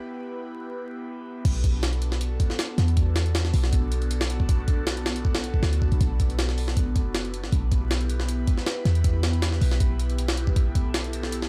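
Atmospheric and raw, this drum and bass passage, cut from a longer jungle piece, runs at 158 BPM in 4/4 with a straight feel in B minor. It opens on an airy, breathy pad holding sustained chords over Em/B, treated with chorus and phaser, as a brief break and build-up. The drop lands at 1.4 seconds, when a compressed, pitched-up, sampler-style jungle kit comes in up front, with a thumpy kick, a high-tuned snare, hi-hat and crash. A deep, boomy 808-style bass enters with it, a sine tone with a fast attack that decays. The harmony moves to Bm7 and then back to Em/B, with the soft pad sitting behind the drums and bass through to 11.5 seconds. The overall sound is dry and gritty, with transformer saturation and vinyl crackle, and the kit carries a touch of studio ambience.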